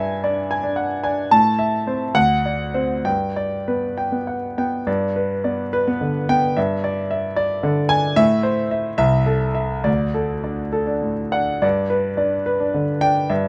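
A close, detailed recording with light reverb presents a clear, natural grand piano, up front with short sustain, alone in this heroic, sparkling excerpt of a classical virtuoso study in G major and 6/8. It moves at a rubato 65-75 BPM in dotted quarters across a range from C2 to A5 as it states its opening section through E7/G, Am, D7 and G, then restates it through E7/G, Am, Am/C and D before settling on G at 11.6 seconds.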